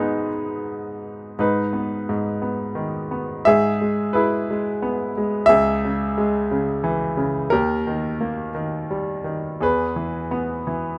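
A bright, polished grand piano opens alone and carries this entire short excerpt, its up-front, short-sustain tone set in light reverb. The lyrical classical solo moves in a flexible, rubato three-beat feel, and the cool, moody harmony travels from G# minor through C# minor and D# before settling on E near 9.6 seconds. The passage is cut from a longer piece, and a new section begins at 1.4 seconds.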